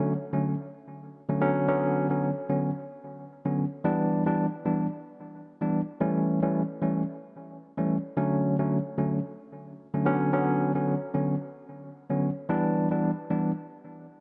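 A lightly swung sixteenth-note feel at 111 BPM in 4/4 sets up this sultry, hypnotic afrobeats fragment in B minor. A clean tine electric piano plays alone from 0.0 to 13.5 s, sitting up front, heard through its built-in speakers and trailed by analog delay as it moves through Dmaj7, Bmadd9, Em7 and A7 in the low-middle register. A moderate plate reverb soaks the mix in a dreamy haze.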